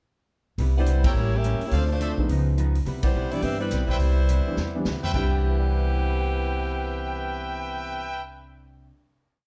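A fast swing at 211 BPM drives this short, energetic big band jazz piece in C major, with a distant, roomy drum kit keeping time on the hi-hat under a boomy kick, with band accents at 1.0 and 3.0 seconds and a fill from 4.6 to 5.1 seconds before the final chord, while a woody, growly upright bass plays up front in a two-feel. A close-miked saxophone section carries the motif-based melody in four-part block voicing, with brilliant trumpet stabs in close voicings and light vibrato over them. Polished grand piano comps with rootless voicings, and a clean hollow-body archtop guitar strums jazz chord shapes in the background, all in light reverb.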